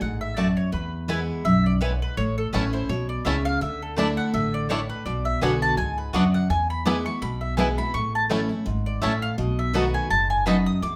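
Swung eighths at a brisk 166 BPM drive this joyful, lively bluegrass fragment in A major: an up-front, woody mandolin carries the melody over a full-bodied dreadnought guitar picking the accompaniment and a thumpy, dark pizzicato upright bass, while a second mandolin adds picked stabs and a bright, twangy banjo played with fingerpicks joins with arpeggios at 2.5 s, the band sounding live together in a large studio room with moderate reverb.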